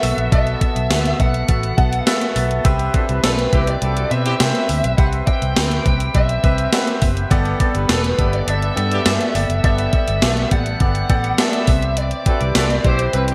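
1980s-style pop with a glossy, uplifting mood, this straight-feel passage in 4/4 is cut from a longer piece and moves through suspended and major-seventh harmony, passing through Gadd9 at 7.3 seconds before returning to Cmaj7. An up-front gated drum machine drives it with a thumpy kick, a gated-reverb snare, hi-hat and tambourine, carrying a tape-warm, sampler-style character. Beneath it, a vintage muted fingered electric bass sits dark, round and punchy, while a brilliant grand piano with analog chorus supplies polished, intimate accompaniment, its action noise audible and its notes sustaining long. A bluesy overdriven lead guitar carries the melody with a picked, distorted edge and digital delay, and a distant, roomy horn section with light vibrato adds stabs from 2.9 seconds onward. A very quiet FM synth bell, pure and mellow with chorus and phaser, surfaces briefly as a second line, all set in a lush hall reverb with bright digital sheen.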